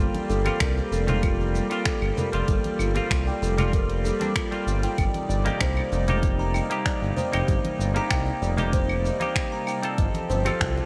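A clean, hollow-body electric guitar with chorus and delay opens this mystical, hypnotic organic downtempo piece alongside a detuned sawtooth pad with tremolo, a smooth, up-front synth bass pumping with sidechain, and a barely audible metallic bronze singing bowl with slow beating; these are soon joined by a buzzing, woody kalimba playing delayed arpeggios, a deep house kit of claves, finger snaps, hi-hat and shaker under gated reverb, ringing congas and bongos in the background, and a deep, layered electronic kick from 0.6 s, as the harmony moves through Gm9, Cm9 and F7 in a bright 1980s-style digital production with light reverb.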